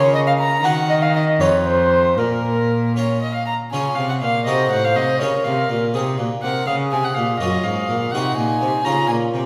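A baroque flute, violin, cello and harpsichord begin together in this grave, solemn passage from a baroque-style sonata movement with continuo, moving in a straight 6/8 at 82 dotted-quarter beats per minute and tuned to A4 = 441 Hz. The flute carries the expressive melody with a pure, wooden tone, vibrato, crisp attacks and rolled-off highs. The violin plays a second line with a nasal, gut-string period sound and an airy bow, heard close and up front alongside the cello. The cello holds the bass with a rich, reedy tone, while the harpsichord fills in the accompaniment, plucked, full and brilliant in the Italian style with three sets of strings. The music opens in Bb minor and turns to Db major at 3.7 s, passing through diminished and Ab-seventh chords before returning to Db. A reverberant recital-hall acoustic, as in a church or concert hall, surrounds the ensemble.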